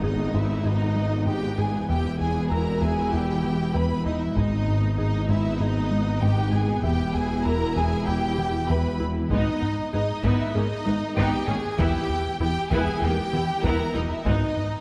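Lush, vibrato-rich violins carry a tense, vast melody over a second violin line, with clear, distant violas, woody cellos and a focused double bass section beneath them, all bathed in a concert-hall reverb. A very quiet, crystalline wavetable pluck plays glassy arpeggios while a hollow, rubbery square-wave bass riff sits low in the mix, as the harmony alternates between G# minor and E minor. This cinematic hybrid orchestral-electronic cue opens with a huge, bright impact, and a heavy-sticked taiko ensemble strikes at 0.3 s and 4.4 s before returning at 9.3 s for the rest of the excerpt.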